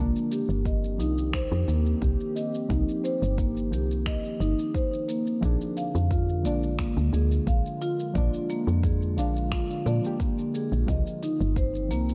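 This dark production has light reverb and a digital ambience, with an earthy, mystical mood in an organic downtempo excerpt played with a straight feel. A woody, round FM bass sits up front with a mellow, fast-attack, decaying tone, while a close-miked, dry marimba played with soft mallets spins arpeggios through a low-pass filter sweep and digital delay. Muted, felt-like synth keys add intimate accompaniment, roughened by vintage 12-bit sampler grit and treated with chorus, delay and sidechain pumping. Behind them, a warbling, nostalgic tape-like pad holds detuned, ring-modulated chords, colored by chorus, built-in reverb and the same pumping. Overdriven electronic shaker and finger snaps enter at 0.2 seconds and a deep, layered electronic kick drum at 0.7 seconds, both set in studio ambience. The harmony moves from Cm7 to Bb7 and returns to Cm7 at 10.9 seconds.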